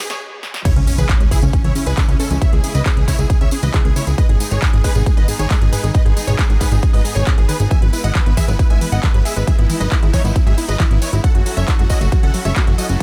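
A bright, tightly produced mix sits in a digital ambience, with pumping sidechain movement breathing through the synths in this emotional, soaring uplifting trance cut from a longer piece. It opens on a drum fill and a very quiet electronic riser, then a brief stop gives way to the drop at 0.7 seconds, marked by an impact as the punchy, up-front electronic kick arrives and the plucky analog bass follows at 0.8 seconds with a funky, wave-folded, ring-modulated bite. The huge, euphoric supersaw lead carries the melody with detuned unison saws and a digital delay, shadowed in the background by a catchy plucky unison lead playing a second line with a sub octave and filter sweep. Beneath them, a lush, evolving supersaw pad holds sustained chords with a touch of vintage 12-bit sampler grit, while a tight, driving sequenced synth spins mellow, chorused arpeggios with a cassette tape tint. The layered big-room dance kit adds a punchy snare, handclaps, metallic hi-hats and crash cymbal in a small room reverb, and a jingly, close and dry acoustic tambourine sparkles in the background as the chords move from C#m7 through G#m and E/G# to F#m7.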